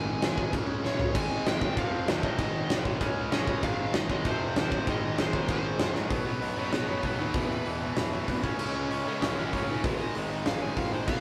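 Punk rock at 193 BPM in a straight 4/4, energetic and upbeat, cut from a longer piece. A big, dark rock kit sits up front with a fat snare, punchy kick, crash, hi-hat and toms, entering at 0.2 seconds and throwing in a short fill before 1.1 seconds. A bright overdriven electric guitar churns out a riff from the start, joined at 1.1 seconds by a tight, distorted second guitar also playing a riff, while a growly fuzz bass, picked and overdriven, holds down the low end behind them. Over the top, a smooth, warm overdriven lead guitar carries the melody, tucked back in the mix with the other strings. After another drum fill, the band drops into half time at 6.1 seconds for the closing stretch, and the whole take has the rough feel of a rehearsal room with a moderate stone-room reverb.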